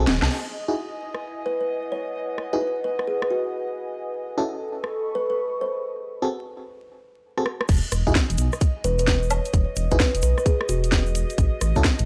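This sunny, bouncy two-step UK garage excerpt in E major runs at 130 BPM with a 64% swing on the sixteenths. It opens on glassy, bell-like FM electric piano stabs, chorused and treated with tape echo, over an airy, breathy pad and a warbling, nostalgic tape-like pad, both pumping under sidechain. A garage drum kit with a cracking, overdriven snare, hi-hat, rim click, woodblock and crash comes in with a short fill, and a detuned saw bass rumbles only briefly at the start. A plucked, woody kalimba carries the melody as the chords move from Emaj9 to A6 and G#5, and the tape-like pad drops out at 5.8 s, leaving a break. At 7.7 s the drop arrives: the dark bass returns alongside a tight, up-front electronic kick and a grainy cabasa in the background, and the kalimba plays again before the harmony settles on A. The sound is dry and gritty, with light reverb, transformer saturation and vinyl crackle.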